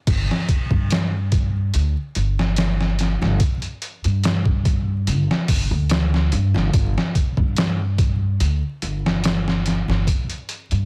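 A dark, woody pizzicato upright bass on gut strings and a gritty, pitched-down, sampler-style trip hop kit with a thumpy kick, medium-tuned snare, hi-hat and crash cymbal enter together at 0.1 s, both up front in a melancholic, brooding groove at 72 BPM in straight 4/4, set in a dry, dense, heavily limited master with vinyl crackle and tuned slightly sharp to A4 = 441 Hz, in this short cut from a longer piece.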